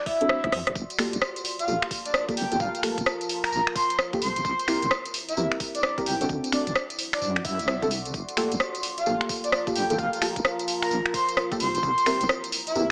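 A swung two-step garage groove from up-front, tape-warm drums of finger snaps, metallic hi-hats, rim clicks and tambourine, with a knocking electronic kick and a drum fill at 0.4 seconds, carries this soulful, moody passage, where a deep wobbling sawtooth bass and mellow chord stabs roughened by phaser, vintage sampler grit and tape echo sit beneath a dark, evolving ambient pad that pumps to the beat, while a breathy, flute-like synth lead with vibrato sings the melody through lush chorus and tape echo, all heard through a small-speaker sound in a moderate room reverb.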